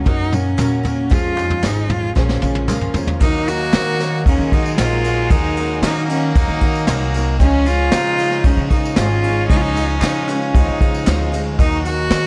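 A straight 4/4 brush-kit groove at 115 BPM, with a punchy kick and high-tuned snare in a small room, drives this bittersweet, wistful Eb-minor indie folk excerpt, where a bright, close bowed cello with vibrato carries the melody over woody pizzicato upright bass, a shimmering octave-doubled twelve-string guitar, a brilliant upright piano in the background, a jingly tambourine and faint human handclaps, until a drum fill at 2.2 seconds leads to a distant classical-style trumpet line and a reedy, breathing harmonium entering at 3.2 seconds to fill out the building arrangement.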